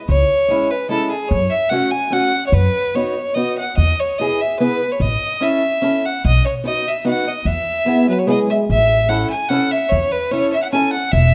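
A biting, up-front fiddle with light vibrato carries the festive, jolly melody of this alpine dance-band excerpt in 3/4, over a woody, growly pizzicato upright bass and a picked archtop guitar with audible finger squeak, while a clear, classical euphonium adds a brief tape-echoed second line at 7.9 seconds, all set in a dark production with a moderate recital hall reverb.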